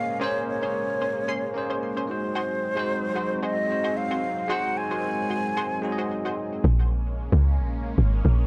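Amapiano at 112 BPM in Bb minor with a deep, hypnotic mood, where a breathy concert flute with vibrato and delay carries the melody over a barky, bell-like tine electric piano, a lush detuned pad softened by chorus and phaser, and punchy filter-plucked chord stabs, until the flute and stabs fall away at 6.4 seconds and a woody, saturated log drum bass drop arrives at 6.6 seconds beneath the pad as the piano fades out just after, the whole passage coloured by light reverb and the warbling pitch drift of worn cassette tape.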